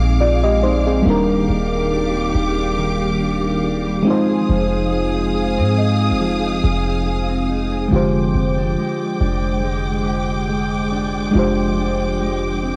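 A mellow FM electric piano opens this late-night R&B passage, its round, soft tone thickened with chorus and a cassette tape coloring. From the start it is joined by a deep, boomy 808-style bass sitting up front, a clean, fingered electric guitar playing compressed arpeggios through harmonic tremolo and tape echo, and a distant, lush string section holding bowed chords with vibrato and portamento. The harmony drifts from Bb9sus4 to Ebmaj7 and Fm7, settling on Fm69 as a second section begins at 7.9 s, giving the gently swung groove a feeling of longing. Between 5.8 and 8.3 s a delicate, bell-like celesta adds a very quiet, airy touch. Light reverb and small-room ambience frame the home cassette sound, keeping the mood intimate in this short cut from a longer piece.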